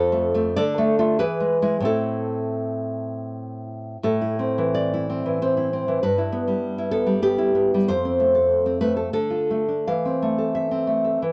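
A solo nylon-string classical guitar opens on an F chord and moves through D minor and E to A minor, setting a melancholic, wistful romantic mood in A minor and 3/4 time with a rubato feel drifting between 77 and 102 BPM. The fingerpicked guitar sits up front, its warm tone carrying audible finger squeak, and after 4.0 seconds a second section turns through E minor over G, F and D minor before resting on A minor over E. The close, dry 1970s-style studio sound carries a light reverb, and this short excerpt is cut from a longer piece.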